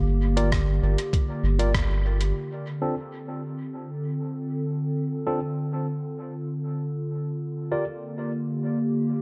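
A straight, steady four-beat groove opens this ambient dub fragment, cut from a longer piece, with a muffled, thumpy electronic kick and a pitched-down, sampler-style kit of hi-hat and rim click, both compressed and tape-warm and set in studio reverb, the kit also trailing dub echo. Underneath, a round, soft sub bass sits up front with a touch of tube saturation, and the band hits a brief accent together before the kick drops out at 1.9 seconds, with the bass and kit falling away at 2.3 seconds. A warbling, nostalgic pad carries the whole fragment, its detuned, dark sustained chords shimmering through chorus, tremolo and its own reverb as the harmony moves from Gm7 to Dm7 and back to Gm7. A worn, slightly out-of-tune tine electric piano scatters lightly overdriven stabs through a combo amp, softened by a low-pass filter and dub echo, with a filter sweep running over it from 2.4 seconds. 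The mood is deep and spacious, with light reverb over the mix and the pad hanging alone after the piano stops.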